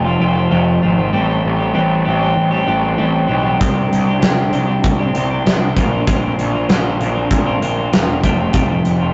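A bright twelve-string electric guitar plays clean, twangy arpeggios over a growly, fuzz-drenched picked bass, opening this restless, cathartic fragment of quiet-loud alternative rock in C major at 97 BPM, with the chords moving from F to Am7. At 3.6 seconds, on the change to Csus2, a big rock drum kit enters with a fat snare, punchy kick and hi-hat, its dark, roomy sound driving the progression on through Bbadd9 and back to F. The rough rehearsal-room recording has light reverb and tube saturation, with a muffled top end.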